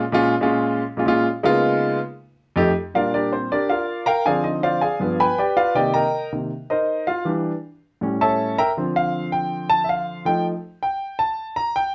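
Jazz in Bb major at a brisk 160 BPM with a straight feel, this short excerpt cut from a longer piece has a sunny, sophisticated mood carried by a clear grand piano alone, up front and present with long sustain, ranging from F2 to B5 over harmonies such as A#m7, Bb6, G7b9 and F9. The piano opens on a brief passage and moves into its featured solo at 2.8 seconds, running to the end at 11.9 seconds. The sound sits in a moderate club ambience and carries the worn, warbling character of old cassette tape, with audible pitch drift.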